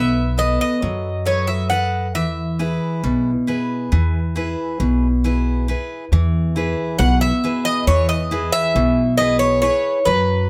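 From the first moment, a metallic bouzouki with some octave-doubled strings carries the melody, its plate reverb set against a full-bodied jumbo steel-string guitar's bright picked accompaniment and a woody pizzicato upright bass, all three up front in a peaceful Greek folk piece in 9/8 at 136 BPM in E major that moves from B7 to E at 2.2 seconds and into a new section at 6.1 seconds within a moderate studio room.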